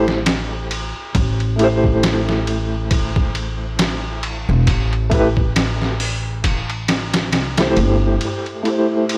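Brooding and hypnotic, this trip hop excerpt at 68 BPM in A minor rests on a single Am7 chord, with a soft, felt-muted upright piano treated with tremolo, tape echo and a low-pass filter, a woody, gut-strung pizzicato upright bass that drops out at 8.2 s, and a compressed, pitched-down, overdriven sampler-style drum kit with a thumpy kick sitting up front in a dry, gritty recording, while a deep, detuned analog pad with chorus enters in the background at 8.2 s and a very quiet, tense, string-like drone on E4 joins at 8.5 s.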